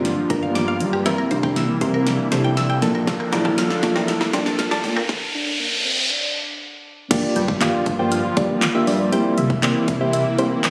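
Dance-pop with a bittersweet, confident mood, built over a punchy electronic drum kit, a fat, saturated analog bass and an airy, breathy pad, with soft electric-piano-like synth keys, a mallet-like woody pluck playing arpeggios, a dark octave-layered lead with phaser and tape echo, and a clean semi-hollow guitar riff in the background, all rising through a filtered build-up with a riser, a stop at 5.1 seconds, and then a drop at 7.1 seconds that brings in a gentle, round pluck melody amid sidechain pumping and light digital reverb, in a phone-recorded excerpt.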